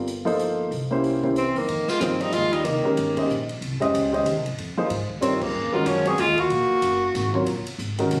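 A brisk swing in 3/4 at 187 BPM drives this modal jazz passage in F phrygian, cut from a longer piece, with a hypnotic, spiritual mood. An intimate, woody upright piano sits up front from the start, its action noise audible, alongside a warm pizzicato upright bass with steel strings and a big-band drum kit whose airy, polished cymbals, medium-tuned snare and punchy kick swing from further back. At 1.4 seconds a tenor saxophone takes the melody with a soft attack, subtone and vibrato, while a clear trombone with light vibrato plays a forceful, vintage-toned second line in the background. The harmony moves through Gm11 and C7b9 into a long stretch of Fm11, and after the band accent at 5.4 seconds it shifts to Ebm11. A moderate club reverb surrounds the group, and the sound carries the roomy character of a phone recording made in the room.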